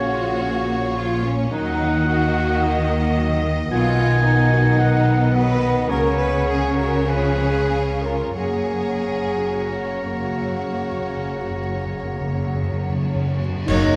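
Classical slow romantic movement for symphony orchestra in F# major, lyrical and warm, moving with rubato at about 44-56 BPM: a lush, vibrato-rich violin section sings the melody over a second violin line, a clear oboe, an airy flute section and a very quiet mellow clarinet, while a mellow bassoon, viola section and dark French horns fill the background, a rich cello section and woody double basses carry the bass, timpani played with soft mallets and dark cymbals with concert bass drum join at 8.4 seconds, and a distant trombone section and punchy, brilliant trumpet strike a closing accent at 13.7 seconds, all inside a wet concert hall reverb with vinyl crackle.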